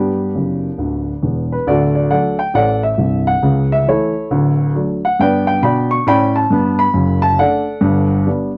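Stride-piano jazz in D major at 136 BPM, this exuberant, swinging excerpt features a solo grand piano, dark and mellow with short sustain and placed up front in a dry, close 1970s-style studio sound with light reverb, opening with a fill from 0.3 to 1.7 seconds before moving into a new section that runs to the end, all tuned slightly flat to A4 = 435 Hz.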